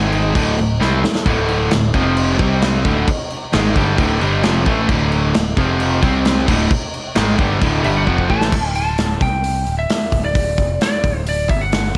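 Studio ambience frames this anthemic, energetic hard rock excerpt at 132 BPM, where three riffing guitars (a crunchy, double-tracked one and a warm semi-hollow one sitting in the background, plus a bright distorted one) drive until 8.5 seconds over a growly, punchy picked bass and an up-front big-room drum kit with a punchy kick and rolled-off top, before a twangy, slightly broken-up lead guitar with slapback echo carries the melody from 7.8 seconds.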